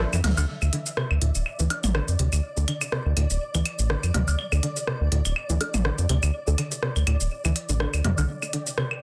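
A dense, heavily limited modern master with light reverb frames this cool, quirky slice of minimal techno, cut from a longer piece and set in a swung 4/4 feel. Up front sits a round, deep analog bass, dark and evolving, its detuned sawtooth, sine and triangle layers giving sustained low notes a fast attack. A twangy, string-like resonator pluck carries the riff, bright and full-bodied with a noise layer, chorus and tape echo. Alongside it, a muted dub chord stab sits in the background with phaser, tape echo and a moving notch, and a filter sweep runs over it from 0.5 to 8.3 s. A minimal click drum kit of clicky hi-hat, ride cymbal, rim click and shaker has a tape-warm, small-room character with soft clipping on the snare, while layered electronic claves, toms and woodblock join at 0.1 s with their own tape echo. High above, a flickering, grainy texture adds a slow attack, long release and built-in reverb.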